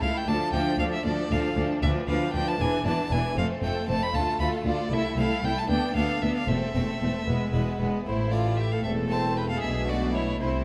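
Pulsing in a straight 6/8 at 77 BPM (dotted quarters), this stormy, driving baroque-style concerto movement in A minor, cut from a longer piece, sets a focused solo violin melody above a lush, very quiet symphonic violin section also carrying the melody, an even chamber violin section on the second line, a smooth-topped viola section and an expressive, soft-attacked cello section in the background, an intense, distant double bass section anchoring the bass, and an airy French-style harpsichord filling in behind, all within a dark production and moderate recital hall reverb as the harmony moves from D minor through F and A minor to E before landing on A minor at 8.1 seconds.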